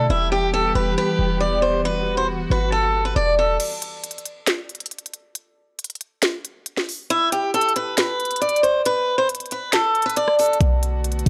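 A bright, boxy picked acoustic guitar in a swing style carries the melody up front, its tone softened by a low-pass filter. This is a menacing, hard-hitting hip hop and trap passage at 137 BPM with a half-time feel, tuned to A4 = 444 Hz. It opens on an E minor chord with a dark chamber string section holding smooth bowed chords with light vibrato and a soft attack, and a clean, sine-like 808-style bass that booms deep with a fast attack and decay. At 3.6 seconds the strings and bass drop out for a break as a trap kit takes over with a knocking kick, sharp snare, crisp hi-hats, rim clicks, finger snaps and a crash cymbal, and the guitar later returns over the beat. The strings and bass come back on a Bm7 chord at 10.6 seconds, and digital ambience gives the recording a dry, gritty hardware character.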